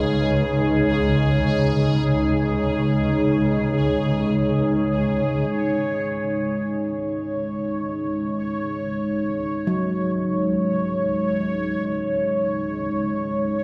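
In free time, this unsettling, desolate dark ambient drone, cut from a longer piece, rests on a C#sus2 chord, with a deep, moody analog pad of detuned sawtooth and sub octave sitting up front with chorus over a swarming, granular low drone that grows through a fade-in from 5.5 seconds. A bubbling, resonant stepped-filter texture drifts above with chorus and reverb. At 9.7 seconds, metallic, bronze gamelan-type bossed gongs enter in the background with delayed arpeggios, all of it held in a cathedral reverb lasting 5.1 seconds.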